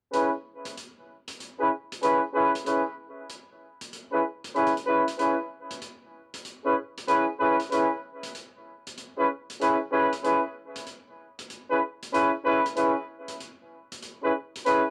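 A clear, tight horn section carries this funky, gritty glitch hop excerpt, playing stabs between C#4 and B4 from 0.1 to 14.8 seconds. The horns carry a light vibrato and a pop-style character, shaped by a low-pass filter and an analog delay. An acoustic hi-hat runs beneath them across the same span, sitting much lower in the mix, with a rolled-off top and the grain of cassette tape. The groove moves at 95 BPM in 4/4 with a 64% swing on the sixteenths, resting on a single C#m7 chord in C# minor. Light reverb and the character of a home cassette recording give the whole piece a roomy edge.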